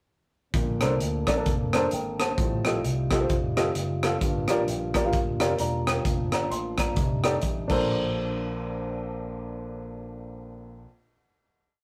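A rough rehearsal-room recording with moderate studio reverb frames this short, complete uptempo gospel piece in Bb major at 131 BPM, swung and jubilant yet reverent. A crisp fusion drum kit sits up front with bright cymbals and a punchy kick, driving a two-beat praise groove through the breakdown until 7.8 seconds. Under it, a dark, round fingered electric bass walks and runs with slides and chromatic approach notes, a baby grand piano offers off-beat close-voiced chords with short fills, and a mellow, distant French horn section holds a tight sustained pad through chords from Bbmaj9 to F13 and back into the final hit at 7.9 seconds.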